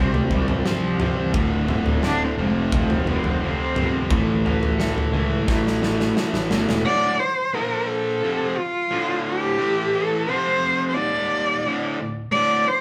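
A dark, bowed cello sings an expressive melody with vibrato and portamento over a very quiet clean electric guitar's arpeggios, two bright, distorted electric guitar riffs (one scooped and up front, the other in the background), a growly fuzz-overdriven bass and a big, punchy rock drum kit in this angsty, cathartic quiet-loud alternative rock excerpt, where a drum fill from 5.5 s to 6.9 s closes the opening before the bass, drums, clean guitar and background guitar drop out near 6.8 s, leaving the cello and the front guitar riff to carry on until 12.8 s in a moderately reverberant room.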